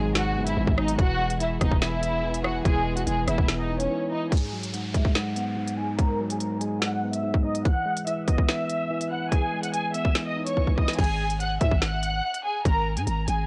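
A bowed violin section carries the melody from the start, smooth and vibrato-rich under a low-pass filter and tape echo, over a clean tine electric piano, a lush, very quiet symphonic string bed that stops at 4.3 seconds, and a growling, buzzy 808-style bass. This menacing, cold drill piece in G# minor runs at 144 BPM with a half-time feel, its electronic kit pairing a hard-clipped kick, woody snare and crisp hats with snaps, rim clicks and crash. The drums drop out briefly before a filter sweep and a downlifter shape the middle stretch, and after a drum fill the bass returns at 11.0 seconds over a bare G#5, all captured dry and gritty with cassette-tape saturation.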